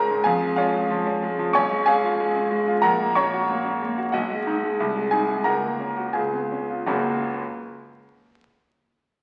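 Sparkling and heroic, this classical virtuoso piano study moves in 2/4 at 80 to 94 BPM with a free, rubato feel, set in F# major and tuned to A4 = 444 Hz. A concert grand plays solo across a span from F#1 to C#6, its tone clear and smooth with a deep bass, short sustain and a vintage character, sitting up front in the sound. The harmony travels from C#/E# and C#7/B through F#/A#, G#m7/B and G#7/B# before settling through F#/C# and C#7 onto F#. The tempo slows from 3.5 s into a new passage that begins at 6.9 s, and the piano falls silent at 7.4 s in this fragment cut from a longer piece. A wet recital-hall reverb surrounds the instrument, and the whole is heard through the crackle of a very old 78 rpm record.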